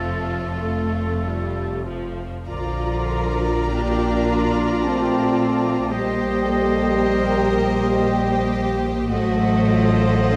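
Close, even cellos ground this tender, serene slow romantic movement for symphony orchestra in 3/4, with a rubato feel. Double basses sit beneath them, and the melody is carried by an intimate, soft-attacked violin section, joined by a distant oboe and a background of focused violins and violas with vibrato. At 2.5 seconds a dark, tight French horn section enters with sustained chords, alongside a clear clarinet and an airy flute ensemble, in a moderate recital-hall reverb on this passage cut from a longer piece.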